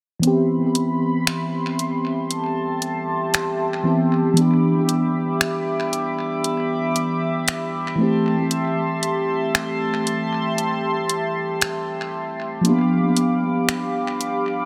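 A mellow FM electric piano carries the accompaniment in this slow contemporary R&B excerpt at 58 BPM, its round, full-bodied tone dark and soft, with a fast attack that decays under chorus, phaser and tape echo as it moves between E3 and G4. Above it, a chorused pulse-width pad holds sustained chords from G4 to D6, shimmering and bright with a retro, detuned character and a soft attack. A smooth, electronic R&B kit of finger snaps and hi-hat sits up front with tape-warm hats and its own tape echo, the 16ths swung at 58% and the kick muted throughout. The harmony moves from Cmaj7 through Em7 and Am7 to G7 at 12.6 seconds, giving the passage a longing, sensual mood. A moderate echo chamber reverb with a 2.4-second decay wraps the echo-heavy mix in a spacious haze.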